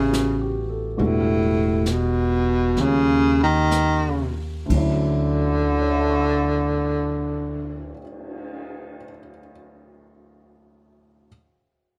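A breathy, whispered baritone saxophone carries the melody up front over a baby grand piano in the background with audible action noise, woody pizzicato upright bass on gut strings and a brushed jazz kit with dark cymbals and a boomy kick, opening this intimate, late-night jazz ballad excerpt in D major at 58-71 BPM with a swung feel, slowing through the first 4.7 seconds as the chords move from A9 through Em7 and Eb7 to Dmaj9, before the piano plays on alone from 8.6 seconds to 11.3 seconds in light reverb.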